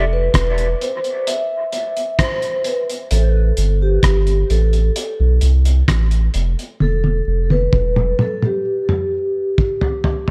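A soft-mallet vibraphone leads this spacious, meditative dub reggae excerpt, its metallic, ringing tone softened into something mellow and airy, shimmering with a fast motor vibrato and trailing dub echo as it carries the melody until 9.8 seconds. Beneath it, a deep, round sub bass sits up front with a soft, sustained body and a quick attack, holding the low end until it drops out at 8.1 seconds. A cloth-damped drum kit enters at 0.3 seconds with a thuddy, muffled character: a tight kick, hi-hat, rim clicks and toms, all gritty and saturated with a rolled-off top that gives it a lo-fi feel. From 6.8 seconds the drums break into a fill that runs to the end, as the harmony moves from a bare E5 through Am7 to Em. A small room ambience wraps the parts in an intimate, close space. This passage is cut from a longer piece.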